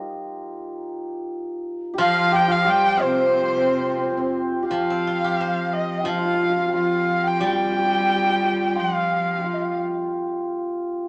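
A shimmering, ringing hammered dulcimer opens this wistful, tender passage of Chinese traditional chamber music alone and up front, in a steady duple metre. At 2.0 s the bowed erhu enters with the melody, intimate and close, with light vibrato, a soft attack and gliding portamento. Beside it, a mellow, hollow large dizi sits in the background with a pure bamboo tone, a crisp attack, vibrato and the buzz of its membrane, while a smooth, even cello adds a clear bowed line below. A bright steel-string zither, played with fingerpicks, fills in silvery, resonant accompaniment at a lower level. The music moves into a new section at 4.7 s, and after the other parts drop away, the dulcimer plays on alone until 11.1 s, the whole ensemble bathed in a lush plate reverb.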